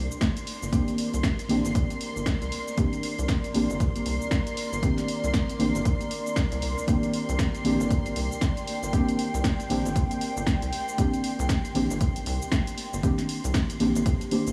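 Hypnotic and moody, this deep house excerpt rests on a single Cm9 chord, with an up-front, punchy electronic kick and a tape-warm analog drum machine carrying hi-hat, shaker and snare in a swung groove. A rubbery, nasal square bass sits beneath deep, warbling chord stabs trailed by tape echo, while a dark, detuned analog pad and a silky string pad with vibrato fill the upper register, all four pumping against the kick. The mix is dreamy and soaked in a huge ambient reverb, with vinyl crackle and a touch of small-room ambience.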